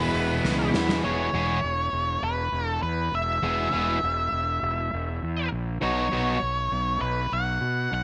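Classic rock with a sunny, driving mood in a straight 4/4, cut from a longer piece. An up-front octave-fuzz lead guitar carries the melody throughout, its tone dark and distorted, while a fuzzed, fingered electric bass sits just as far forward with a warm, amped growl. Two overdriven electric guitars play the riff until 6.4 seconds, one bright and set back in the mix, the other warmer and more present. The opening second is busier: a dark, smooth second lead guitar sounds briefly in the background, a very quiet plugged-in steel-string acoustic guitar adds picked accompaniment with a hint of finger squeak, and a tonewheel organ holds soft sustained chords with key click and a slow rotary spin. A gated drum kit with snare and hi-hat, set in a bright stone room, plays a fill from 0.4 to 1.0 seconds before the longer second section takes over. Light reverb and studio ambience frame a sound with a rounded, slightly dull top end, and the harmony moves from E to B near the close.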